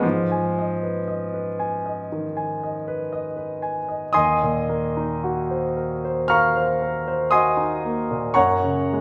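A wet recital-hall reverb with a 1.5-second decay surrounds this brief excerpt, and the room is heard from further back, even as the concert grand itself sits up front with a clear, natural tone. This is impressionist solo piano in a classical vein, nocturnal and wistful in mood, moving slowly at 50-60 BPM in 4/4 with a free, rubato feel in Eb dorian. The piano ranges from Eb2 to F6, its deep bass and long sustain giving the harmony a rich foundation. The opening passage rests on Abm6, and at 4.1 seconds a second section shifts to Ebm6, before the harmony settles onto Gb at 8.3 seconds. Cut from a longer piece, the fragment ends at 9.0 seconds, leaving a lingering, dreamlike impression.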